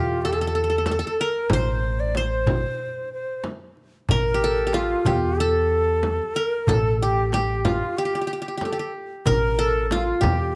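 A qanun played with fingerpicks carries the melody up front, its triple strings bright-edged. Alongside it, a breathy, reedy end-blown ney plays a tongued second line with vibrato, and a woody pizzicato upright bass holds the low end of this soulful, hypnotic Arabic maqam ensemble piece in A maqam kurd at 93 BPM in 4/4. A close, dry clay darbuka sits in the background from the start, a frame drum struck with hard hands joins at 0.9 s, and light reverb with close, detailed microphones keeps this short cut from a longer piece intimate.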